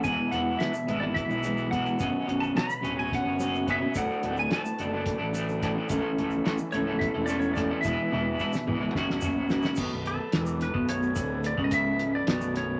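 Psychedelic rock in an odd 7/8 metre at a driving 216 BPM counted in eighths, this short cut from a longer piece feels mysterious and trippy, moving from B dorian into B minor at 9.8 s. An up-front, twangy electric guitar through a small old amp carries the riff with a bright, slightly broken-up bite and harmonic tremolo. Above it, a clean, compressed lap steel sings the melody with warm slide tone, and an electric slide guitar solo arrives at 9.8 s. A fuzz-drenched fingered bass gives a round, punchy bottom, while a very quiet, reedy combo organ holds sustained chords with heavy vibrato. The cloth-damped drum kit sounds dry and thuddy, with a fat snare, tight kick and dark cymbals, and rolls through a fill from 8.1 s to 9.8 s, while a grainy tube shaker ticks along in the background. Light reverb and a layer of vinyl crackle lend the whole an aged, hazy patina as the chords wander from E7 through Bmadd9 and D6 to settle on Bm7.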